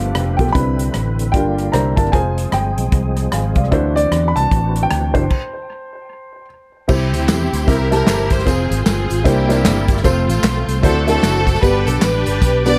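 Hopeful and uplifting, this swung, uptempo gospel passage opens with an intimate grand piano carrying the melody over a woody, slightly detuned upright piano, a reedy tonewheel organ with fast rotary shimmer and key click sitting in the background, a round, punchy fingered electric bass and a natural country drum kit with bright cymbals and a punchy kick. After a stop at 5.3 s, a lush symphonic string section takes over the melody at 6.9 s, joined by background tambourine, maracas and group handclaps. The echo-heavy mix adds analog delay to the grand piano, drums, strings and percussion, and the chords move through rich ninth harmonies and a minor turn on the way to a closing G.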